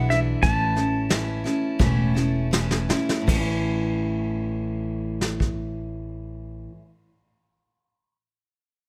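Sunny and down-home, this short cut of honky-tonk and classic country sits in A major at a relaxed 78-92 BPM in a straight 4/4, easing down in pace over its first 3.3 seconds. A twangy, clean pedal steel guitar carries the melody with a fingerpicked slide sound until 2.5 seconds, over a full-bodied, up-front picked acoustic guitar and a woody, thumpy upright bass plucked on gut strings. A vintage brush kit with a punchy kick and dark cymbals plays a drum fill from 2.5 to 3.3 seconds, leading into the next section, all in a light reverb.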